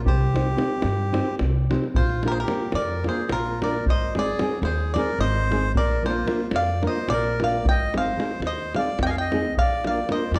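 A twangy, up-front bluegrass banjo played with fingerpicks carries the melody in this bittersweet, fiery Balkan wedding-band excerpt, moving in a straight 7/8 at 221 BPM (eighths) over chords that shift from Cm to Bb and Ab. Beneath it, a woody pizzicato upright bass holds the low end, a reedy single-reed accordion with dry tuning adds a clear second line from 0.1 seconds, and a tight davul drives the percussion. A full-bodied, thumb-plucked nylon-string guitar fills in the accompaniment from 0.3 seconds, all set in a moderate recital-hall reverb within a dark production.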